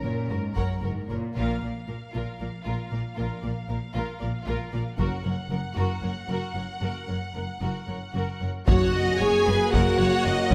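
Driven by a 7/8 pulse at 230 BPM counted in eighths, this majestic, triumphant slice of epic orchestral film score opens on lush, vibrato-rich violin sections carrying the melody and a second line over woody, dark violas, mellow background French horns, and bowed cellos and double basses anchoring the bass with a rich low end. A close, dry taiko ensemble struck with heavy sticks enters at 0.6 seconds, and background timpani on medium mallets mark a band accent at 1.4 seconds and return at 8.7 seconds, when a trombone section joins with sustained chords. The ensemble sits in a moderate scoring-stage reverb, and the piece is cut from a longer work.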